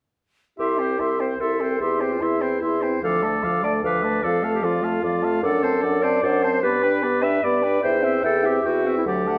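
Classical-period wind quintet music, spirited and lively, moves at a quick 149 BPM in 3/4 in C major, with the full ensemble playing from 0.6 to 9.4 s in this short excerpt. An airy, soft-attacked flute carries the melody over a second line from the oboe with light vibrato, while a clear clarinet and a warm French horn fill in the accompaniment. A dark, up-front bassoon anchors the bass as the harmony travels from C through D minor and D7/F# to G and back to C/E, all set in a moderate recital-hall reverb.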